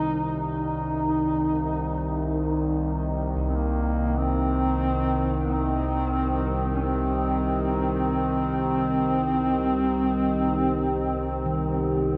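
Drenched in a huge, long-tailed reverb, this desolate and unsettling dark ambient drone excerpt sets a mellow, vibrato-laden duduk melody with tape echo over a nasal, evolving analog drone with chorus, while very quiet, softly beating gamelan-type bossed gongs trace arpeggios, a ringing bronze singing bowl hovers barely audible beneath, and a deep, detuned pad of sustained chords joins at 6.3 seconds.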